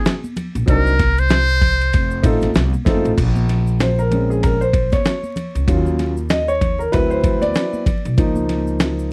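A swung 96 BPM jazz-hop groove in Bb minor sets a smoky, nocturnal mood, with a gritty, compressed sampler-style drum kit and its thumpy kick up front, soft-handed maracas and congas in the background, a woody pizzicato upright bass entering at 0.6 seconds, a buzzy, thin muted trumpet with light vibrato and scooped notes carrying the melody until 2.4 seconds, and an intimate concert grand piano with audible action noise comping through chords like Cm7b5 and F7 before taking a solo from 3.2 seconds, all in a dry, close 1970s-style recording dusted with vinyl crackle.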